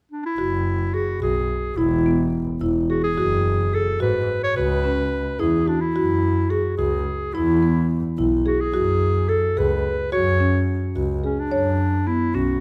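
A clear, soft-attacked clarinet carries the classical-style solo melody up front from 0.1 s, over woody, round marimba arpeggios played with soft mallets and a rich, nasal bowed double bass with vibrato. This hypnotic yet urgent contemporary chamber piece moves in a straight 5/8 at 216 BPM (eighths) in F# minor, circling around F#sus2 harmonies. A moderate recital hall reverb surrounds the trio in this passage cut from a longer work.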